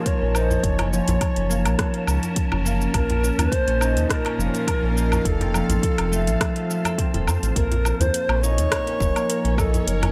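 Organic downtempo with a mystical, meditative mood, built on a gently swung groove in a minor key. A low, reedy wooden flute in the Native American style carries the melody with a soft attack, vibrato and a distant, airy tone, trailed by a delay. A concert harp plays ringing, fingerpicked arpeggios, also echoed by delay, while a tense, string-like drone sustains chords in the background with vibrato, its own reverb and a pumping sidechain pulse. A dark, breathy wind-like texture hovers in the background until 7.6 s. The rhythm section pairs a deep, tape-warm electronic kick with a layered deep house kit of metallic hi-hats, rim click, shaker and woodblock, and a close, dry djembe struck with hard hands sits further back. Up front, a round analog bass with a fast attack holds the low end, and the overall sound stays fairly dry.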